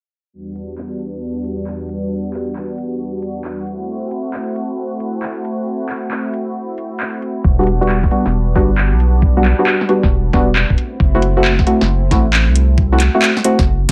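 A low-pass filtered mix with a moderate small-room reverb and a filter sweep running through it gives this soulful, moody two-step UK garage excerpt a dusky, muffled glow, swinging at 135 BPM in E minor. A warm, smooth analog pad of detuned sawtooths opens at 0.3 seconds with slow-attack, sustained chords, its chorus, moving notch and sidechain pumping giving the bright top a breathing motion as it shifts between Em9 and F#m7b5. From 0.6 seconds a garage kit adds woody snare, handclaps and metallic hi-hats, layered and overdriven in a small room ambience. At 7.4 seconds the arrangement fills out: a knocking, overdriven electronic kick enters alongside a deep, thick, saturated sine sub bass that sits up front. Just after, a soft, mellow chord stab blending triangle, sawtooth and sine tones adds fast-attack, decaying hits that evolve under their own filter sweep, coloured with chorus and digital delay.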